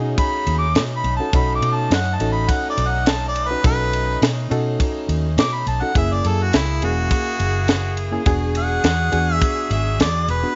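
Swaggering and rollicking, this short cut from a straight-eighth soul blues in B mixolydian at 104 BPM puts a bright, overdriven harmonica solo up front over a tight, dry funk drum kit with a high-tuned snare, a round, foam-muted electric bass, a reedy, slightly out-of-tune electric piano heard through its built-in speakers, and a punchy horn section holding sustained chords in the background, all in a small room as the chords move from B9 to F#9 at 6.0 seconds and E9 at 8.3 seconds.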